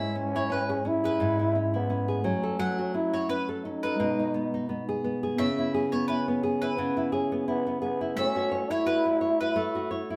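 A cup-muted trombone leads this short, sunny acoustic pop excerpt, singing a heartfelt solo melody up front over fingerpicked nylon-string guitar, picked mandolin arpeggios and a reedy electric piano, all four sounding together from the start. The tempo is 86 BPM in 4/4 with a light swing on the sixteenths. The trombone's veiled, raspy tone carries a growling grit beneath a smooth top and vibrato, while the full-bodied, deep classical guitar sits close beside it as a warm foundation. The double-strung mandolin adds bright sparkle in a high register, and the clean electric piano, heard through its built-in speakers, shimmers with fast tremolo in the background. The harmony moves from C#m/G# through F#m and B6, and a second section begins at 5.4 seconds on C#m7 before settling on A6, all played live in one room with a stone-room reverb.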